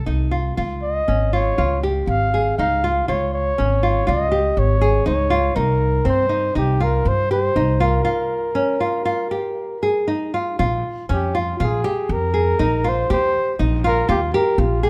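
A touch of reverb surrounds this pensive, urgent excerpt of contemporary chamber music in 5/4, where a fingerpicked nylon-string guitar with old strings plays classical arpeggios, a thumpy pizzicato upright bass on gut strings holds the low end, and a breathy, mellow flugelhorn with light vibrato enters at 0.8 seconds to carry a jazz-style solo melody, all three up front through a break from 8.1 to 10.6 seconds and into a new section at 10.6 seconds.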